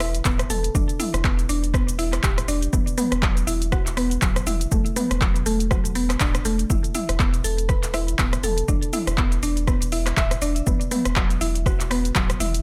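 Afro house at 121 BPM in 4/4 with a 58% swing on the 16ths and a warm, driving mood, tuned to A4 = 441 Hz. A woody, mallet-like FM pluck carries up-front arpeggios through chorus, delay and sidechain pumping, while a deep, round sine sub bass pumps beneath. An overdriven deep house kit of handclaps, hi-hat, rim click, shaker and toms plays from the start, and a punchy, overdriven electronic kick joins it at 0.3 s. Digital ambience frames this short cut from a longer piece as the harmony moves from E7(no3) to Bm7, E5 and B5.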